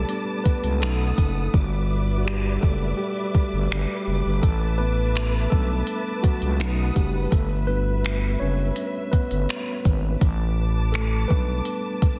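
The sound is dry, dense and heavily limited in a modern way, and this short fragment is cut from a longer contemporary R&B piece in E dorian at 83 BPM in a straight 4/4. A mellow, clean tine electric piano, heard through its built-in speakers, carries a solo across the whole passage over chords moving from A9sus4 to B7 and Em7. A growling, thick FM bass with a fast attack and sustained notes sits up front in the low register. The smooth, produced drum kit mixes finger snaps, smooth hi-hats and a soft kick, with soft clipping on the snare and a tape-tinged texture that was re-recorded in a large room; its hi-hats drop out between 1.5 and 4.4 seconds. Higher up and quieter in the mix, a dark, woody symphonic string section holds lush bowed chords with vibrato and a smooth top, giving the groove a late-night, sensual mood.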